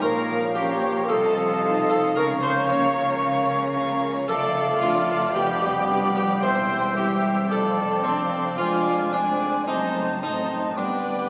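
Crackling like a very old 78 rpm record and bathed in the wet reverb of a scoring stage, this quirky, playful cinematic fragment sets a full, plucked harpsichord melody beside a very quiet, focused violin section up high, while a second violin line, a pure silver flute, a warm cor anglais, a mellow bassoon and a distant viola section weave the inner parts. A ringing, bright harp runs arpeggios as the cello and double bass sections bow the bass, and a mellow French horn section adds sustained chords from 0.6 seconds.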